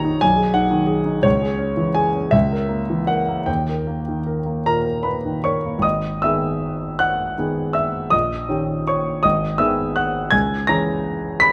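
In a rubato 6/8 lilt at 50-60 BPM counted in dotted quarters, this brooding, bittersweet romantic character piece for solo piano, cut from a longer work, unfolds in G# minor on an intimate, up-front concert grand with deep bass and audible action noise, with its harmony settling on D# before turning back to G#m at 5.8 s, inside a moderate large-studio reverb.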